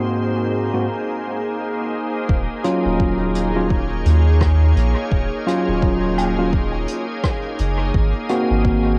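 Ambient dub with a deep, hazy mood, moving at an unhurried pace with a gentle swing. A soft, organ-like pad holds sustained chords throughout, its detuned tone given a calm shimmer by ensemble chorus and its own reverb. Alongside it, a gritty electric piano played through a combo amp punches out overdriven stabs that trail off into dub echo. At 2.3 seconds a round, mellow sub bass arrives up front with a deep electronic kick drum carrying overdrive and cassette-tape colour. Just after, at 2.6 seconds, a quiet jazz brush kit slips in with hi-hat, rim clicks and woodblock, its small-room acoustic sound also passed through tape and dub echo. The whole fragment, cut from a longer piece, has the hazy intimacy of a home cassette recording, shifting from an Ab7 opening to a long stretch on Ebm7 before returning to Ab7.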